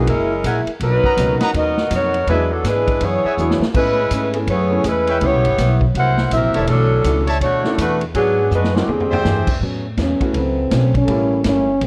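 A bright saxophone section carries the joyful, energetic big band swing melody, punctuated by smooth-topped trumpet stabs over a polished piano, woody pizzicato upright bass, picked acoustic guitar with finger squeak, and a swinging drum kit with a boomy kick and fills, until a dark, close-miked trombone takes a solo at 9.6 seconds backed by tight trombone section chords, all colored by light reverb and a worn, warbling cassette-tape pitch drift in this piece cut from a longer work.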